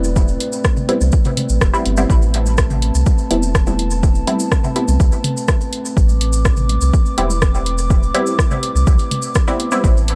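This short cut from a longer dub techno piece opens on a dark, detuned analog pad holding an Am9 chord, its slow-attack sustain roughened by vintage 12-bit sampler grit and sidechain pumping. A muted, filtered chord stab with a short plucky decay sits alongside it, smeared by chorus and phaser and trailing into dub echo. A round, mellow sub bass anchors the low end up front, while a grainy acoustic cabasa adds a thin layer of bright texture. The punchy electronic kick arrives at 0.2 seconds together with tape-warm congas and toms that pump and echo in the background, and a deep house kit with dark hi-hats and rim clicks joins at 0.4 seconds. The whole thing feels cavernous and nocturnal, with a dry, gritty hardware character and a touch of transformer saturation.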